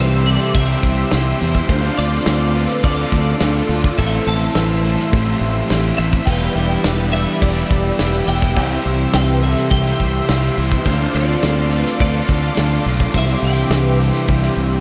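A straight 4/4 pulse at 105 BPM carries this dreamy, wistful shoegaze and dream pop fragment in C major, cut from a longer piece, with a loose indie drum kit entering at 0.5 s in the background, its punchy kick, medium-tuned snare and crash cymbal sitting in a small room alongside a jingly tambourine. Up front, a growling fingered electric bass with overdrive anchors the low end. An overdriven electric guitar with analog chorus and a very quiet, compressed, direct-recorded clean electric guitar play riffs, while a picked twelve-string acoustic guitar adds shimmering, octave-doubled arpeggios, finger squeak audible. A twangy twelve-string electric guitar carries the melody in the background through ensemble chorus and diffuse ambient delay, and a smooth analog pad of detuned sawtooth tones with soft attack holds sustained chords under chorus and tremolo. The harmony moves from C through Dm7, Am and Em7 before returning to C and Dm7 and settling on Cadd9, all within a mix soaked in plate reverb.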